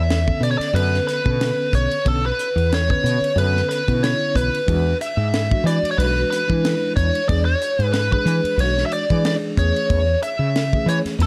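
A biting, overdriven lead guitar with slapback echo carries the melody up front over a woody, round fretless bass, a tight funk kit with a high-tuned snare, and clean tine electric piano accompanying through its built-in speakers, giving this funky, slick electric jazz fusion excerpt in E mixolydian a lightly swung 92 BPM groove, moving from Bm9 to E9 at 4.7 seconds in a dark, dry production.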